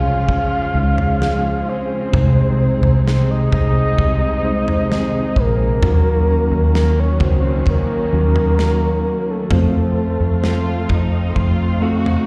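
Opening on a soft, octave-layered synth lead with chorus and slapback echo over mellow tine electric piano, a dark bowed string section, a very quiet fingerpicked steel-string acoustic guitar and a round, foam-muted electric bass, this heartbroken, emotional pop ballad at 65 BPM in 4/4 brings in an acoustic drum kit of tight kick, snare and toms at 0.3 seconds and a lush symphonic cello section with portamento at 10.4 seconds, moving from Db through Ab/C and Ebm7 to F in a recital-hall reverb that sounds like a live gig heard through the venue's PA, cut from a longer piece.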